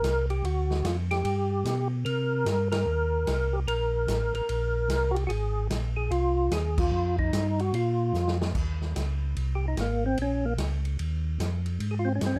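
Greasy and soulful, this soul jazz organ trio excerpt swings in 4/4 with a swung eighth-note feel. A percussive tonewheel organ carries the melody up front, its fat, clean tone marked by key click, third-harmonic percussion, chorus vibrato and a slow rotary speaker. Beneath it, a second tonewheel organ supplies a round, mellow bass line, also close and clicky, turning through its own slow rotary speaker. A big-band drum kit sits more distant in a roomy studio space, with dark cymbals, a medium-tuned snare and a boomy kick. The band hits accents at 2.7 and 6.7 seconds, and a drum fill leads into an organ solo at 8.6 seconds. The production is warm, with light reverb, and the passage is cut from a longer piece.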